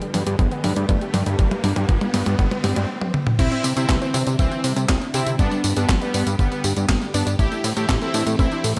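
A straight, steady four-four pulse drives this playful, romantic italo disco excerpt, built on a clean 12-bit drum machine with crash, handclaps, hi-hat, a medium-tuned snare, tambourine and toms, up front with a tape-tinged feel and gated studio reverb. A gritty, thumpy electronic kick, compressed and sampler-style, joins at 0.4 seconds. A fat, thick analog bass with a detuned sawtooth and wave-folded edge and a filter sweep sits forward in the mix. In the background, a swirling, vintage string machine holds slow-attack sustained chords through ensemble chorus and phaser, while a warbly, dusty lo-fi pluck spins arpeggios with a noise layer, chorus and delay, and an electronic riser climbs beneath opening drum fills before a brief stop. At 3.4 seconds a bold, brassy analog synth lead takes the melody with vibrato, chorus and digital delay as the harmony moves from G through Cadd9 and back to G before landing on Am7, all set in light reverb.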